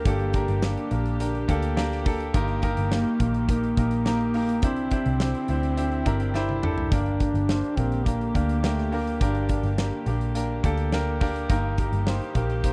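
A dry, close 1970s-style studio sound with small room reverb frames this dramatic, earnest piano-driven pop fragment in G minor at 105 BPM, where a dark duduk plays a folk-style solo melody with vibrato and scooped notes until 9.7 s over a clear, polished baby grand piano, soft sul tasto chamber strings in the background, a round, foam-muted picked electric bass and a huge arena drum kit with a fat snare and punchy kick, as the chords move from Gm through Eb/G and Cadd9, with piano and drum fills leading into the return to Gm at 6.9 s.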